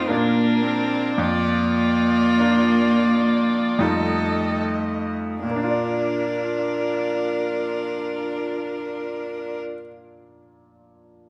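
This is a slow, romantic classical movement for piano quartet in Bb major, cut from a longer piece, with a serene, lyrical mood and a rubato 3/4 feel that moves between 35 and 57 BPM and slows down over the first 5.4 seconds. A single violin carries the melody with a rich, smooth tone and vibrato, sounding somewhat distant, while one cello plays a clear, evenly bowed second line with light vibrato from up front. One viola adds smooth, clear accompaniment with vibrato, and the grand piano supplies a bright, brilliant, polished accompaniment with long sustain, sitting present and close. The harmony rests on Bb, passes through Bb/F and an F9, and returns to Bb at 5.4 seconds, where a new section begins. The strings stop at 9.6 seconds, leaving the piano alone until 11.3 seconds, all set in the reverberant ambience of a recital hall.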